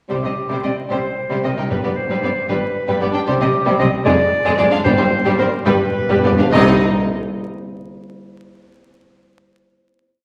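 Restless and urgent, this brief, complete classical-period movement for symphony orchestra moves in a rubato 6/8 at 75 BPM in C minor, with violins carrying a rich, vibrato melody over a second violin line, a clear, punchy clarinet up front, and viola, cello and double bass sections sustaining a driving ostinato and bass in the background. The dark double basses, with soft attack and portamento, double the bass line beneath lush, smooth cellos, while timpani with soft mallets enter at 1.7 s, striking single strokes on bass notes and playing a fill at 5.7 s before the closing C minor chord at 6.5 s. A wet recital hall reverb and vinyl crackle surround the ensemble.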